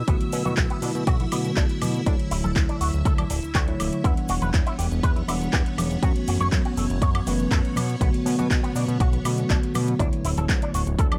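A straight 4/4 nu-disco groove, groovy and sensual, rides on a punchy, overdriven electronic kick up front and an overdriven pop kit of handclaps, metallic hi-hats and woodblock, with very quiet congas and cabasa beneath, while a fat, detuned analog bass with a filter sweep anchors a Bm7–Dmaj9–Em9–F#m7 progression under a mellow tine electric piano with tape echo and sidechain pumping, a dark, clean envelope-filtered electric guitar riff with ensemble chorus and tape echo, and lush vintage string-machine chords that pump along, in a dry, close mix cut from a longer piece.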